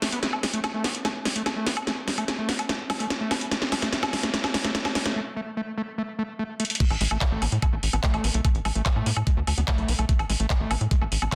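A screaming, squelchy acid line riffs between G#3 and B3 in this driving psychedelic trance excerpt at 146 BPM, its resonant filter sweeps thickened by distortion, chorus, tape echo and sidechain pumping. An up-front techno kit of metallic hats, handclaps, woodblock, crash and a cracking, soft-clipped snare fills through the build-up before a break at 5.2 seconds. At the drop at 6.8 seconds, a knocking electronic kick arrives on an A5 chord, joined at 6.9 seconds by a tight, nasal sawtooth sequencer bass, all set in a moderate digital room within a dense, heavily limited master.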